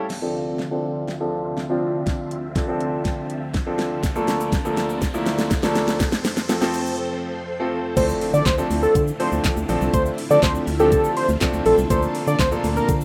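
A thick, detuned sawtooth unison lead takes the melody at 8.0 seconds, bold and up front with vibrato and a trail of delay, as this bittersweet, driving dance-pop excerpt in D minor drops at 122 BPM. Before that, a clear concert grand piano and a lush vintage string machine with ensemble chorus carry the chords, both pumping with sidechain compression and darkened by a low-pass filter while a filter sweep and a very quiet riser build toward a one-second break at 7.0 seconds. The smooth R&B drum kit sounds electronic and produced, with a knocking kick, fat snare, metallic hats, handclaps, shaker and crash, plus a drum fill running from the start of the build-up until the break. A very quiet, grainy egg shaker from a distant large room joins at 4.0 seconds, and a hollow, percussive organ-like FM bass arrives with the drop, its dark, decaying notes also pumping. The harmony moves from Dm7 through Bbmaj7 and F, heard through moderate plate reverb in a rough home demo mix, and the piece is cut from a longer work.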